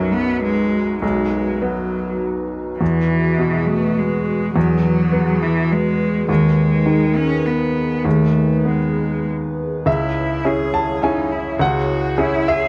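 From the first moment, a bright baby grand piano, a single bowed cello and a hollow synth pad sound together in this longing, melancholic neoclassical piece for piano and strings, cut from a longer work. It moves in a rubato 3/4 at around 103 BPM in C# minor. The brilliant, polished piano sits up front as the accompaniment, its short-sustained notes ranging from deep bass to high treble. The cello carries a second line with a smooth, even tone and vibrato. Alongside them, the soft, flute-like pad holds airy sustained chords with slow attacks, long releases and a touch of chorus. The harmony passes from B through Eadd9 and G#m/D# before settling on C#m at 9.9 s, where the opening phrase begins again, all set in a moderate studio ambience with a dark production.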